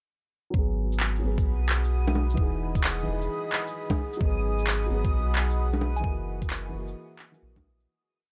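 Ghostly and wistful, this short future garage piece moves at 131 BPM in G# minor with a swung 16th-note feel, cycling through G#m7, Emaj7 and F#7. A muffled, thumpy two-step kick and a skittering, shuffled beat of shaker, clap and low bongo, tape-warm and up front, carry the groove throughout. Beneath them, a round, deep dub sub bass holds long gliding notes, while a boxy, felt-muted upright piano plays held chords with syncopated pushes through a low-pass filter, tape echo and a filter sweep, both pumping with the sidechain. A moody sawtooth pad with chorus and reverb enters at 1.5 seconds, joined by a reversed, granular swelling texture holding a high note in the background. The track fades out from 5.4 seconds, and at 6.0 seconds a gentle FM synth lead with a warbling, vintage tone adds one brief note.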